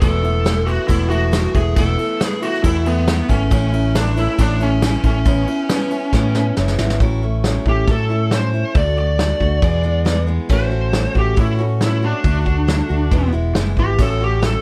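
A straight 4/4 pulse at 138 BPM drives this hopeful, jangly folk and heartland rock excerpt in A major, where a soft brush drum kit with a punchy kick sits in a roomy studio space, a round, amped electric bass holds the low end, a bright, boxy parlour-style steel-string acoustic guitar is picked throughout, and a smooth, dark, overdriven lead guitar carries the melody until a drum fill at 6.1 seconds ushers in its solo from 7.0 seconds over a cycling A6, D and E progression, with little reverb on the mix.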